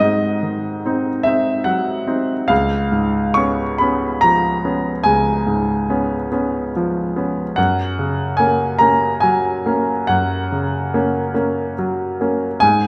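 Swaying in a rubato 12/8 at 48 dotted-quarter beats per minute, this dreamy, serene romantic nocturne for solo piano drifts through G#7 and C#7 before settling on F# at 7.6 seconds. The concert grand sounds clear and natural, placed up front with a deep bass. Its range spans C#2 to C#6, and a wet recital-hall reverb surrounds it across the 12.9-second fragment of a longer piece.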